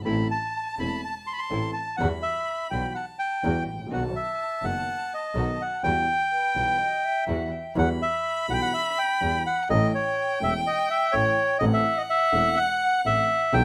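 A rough, homemade mix in a moderate studio room frames this passionate, melancholic tango, a passage cut from a longer piece, moving at 125 BPM in 4/4 with a rubato feel in E harmonic minor. The reedy, dark bandoneon sits up front carrying the melody, while a bowed violin adds a second line with vibrato, a soft attack and expressive portamento. Underneath, a concert grand piano supplies mellow accompaniment with deep bass, and a bowed double bass gives a clear, biting, earthy foundation with light vibrato. A very quiet, veiled string section plays muted stabs through the first half, stopping at 7.5 seconds, and a pure, metallic flute slips in briefly from 6.3 seconds as another second line. The harmony turns through A minor, E minor with an added ninth and B major before the second half shifts to A major and back to A minor.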